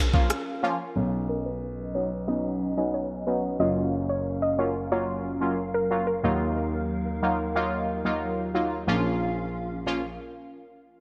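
A brassy, nasal synth brass stab with a detuned sawtooth edge sits up front in this sunny, bouncy dancehall excerpt at 91 BPM in 4/4, playing the accompaniment through chorus and phaser. Beneath it, a hollow, flute-like pad holds sustained chords with a warbling vintage ensemble chorus and sidechain pumping, while a dark, boxy baby grand piano takes the bass line. A round, gentle pluck carries the melody from 1.0 s, touched with chorus and delay, over chords moving from A#m through Badd9, F#maj7 and D#madd9. The electronic afro-pop drum kit, with its knocking kick, smooth hats and rim click under gated reverb, sounds only briefly at the start. A filter sweep runs across the section until the music stops at 10.2 s, and a moderate plate reverb colours the bright 1980s-style digital production.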